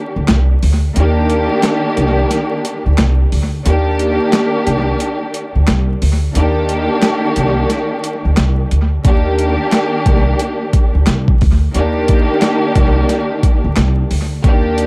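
Small-room ambience, vinyl crackle and an echo-heavy mix give this short boom-bap hip-hop fragment a nostalgic, lived-in glow, with a swung sixteenth-note feel. A lush, bowed symphonic string ensemble with expressive vibrato opens at 0.0 seconds, sounding distant through cassette-tape coloring, filtering and analog delay. A woody, dark upright bass plucked on gut strings joins almost at once, and a gritty, compressed sampler-style kit follows with a thumpy kick, a medium-tuned snare, hi-hat and handclaps, overdriven and touched with its own analog delay.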